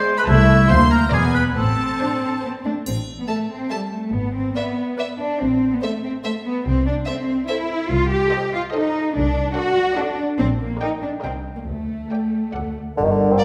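A warm oboe line opens briefly alongside a clear, intense bowed violin melody and a smooth viola accompaniment in this playful, mischievous film cue in A minor at 143 BPM in 3/4, joined by a rich second violin line, lush up-front cellos and a focused double bass beneath, with a dark-toned triangle touch at 2.9 seconds and a bassoon and mellow, distant French horns arriving only at 13.0 seconds, inside a wet scoring-stage reverb heard from further back in the room.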